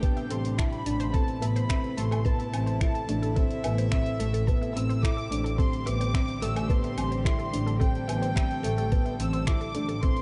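Piano and strings electronica with a hypnotic, moving mood, cut from a longer piece, built on a dark, woody upright piano riff and a reedy, gut-string violin section carrying the melody over sul tasto chords from a string quartet in the background. A thumpy, muffled electronic kick sits up front beside an overdriven deep house kit of finger snaps, hi-hat and woodblock, while a bowed double bass section enters at 0.3 seconds with sidechain pumping, and a round, detuned sawtooth pluck plays arpeggios with chorus, delay and pumping. Shimmer reverb surrounds the melodic parts in a dark production that shifts between Csus2/A and Amadd9.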